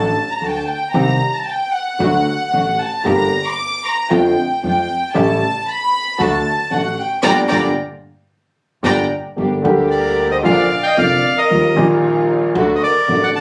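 A floating, sul tasto violin section carries the opening of this tense, dramatic rubato tango fragment, with a deep-bassed concert grand piano, veiled con sordino strings in the background and woody pizzicato upright bass beneath, a band accent from 7.2 s, and a reedy, bright bandoneon stepping forward with the melody at 9.9 s, all in a moderate club reverb with a phone-in-the-room character.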